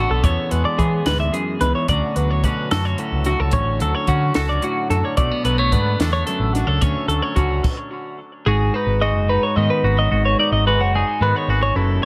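An echo-heavy, lightly reverberant small-room mix carries this playful, wistful math rock and midwest emo excerpt in 6/8 at 73 BPM, where a bright, twangy electric guitar with phaser and analog delay plays accompaniment, a clean twelve-string electric guitar spins delayed arpeggios, a round hollow-body short-scale picked bass holds the low end, and a dry compact cocktail kit with dark cymbals, a high-tuned snare and punchy kick plays from 0.2 s through 7.8 s over E7, Dmaj7 and Bm7 before a stop at 7.6 s gives way at 8.5 s to a G#m7 section.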